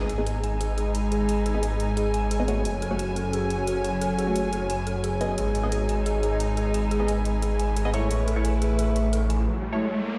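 This dark, tense excerpt of technical drum and bass at 176 BPM in G# phrygian opens with several parts together. Muted, veiled strings hold sustained chords up front over a snarling, distorted saw bass, while an eerie, inharmonic bell arpeggiates through chorus and delay. A nasal, band-passed chord stab runs under a filter sweep with phaser and cassette-tape colour, and an airy, breathy pad sits in the background as the chords move through G# minor, F# minor and A. Bright, overdriven electronic hi-hats enter at 0.1 s, all within a large studio reverb in a bare room. A riser arrives at 9.2 s, and the other parts drop away for a break at 9.5 s while the stab and riser carry on to the end.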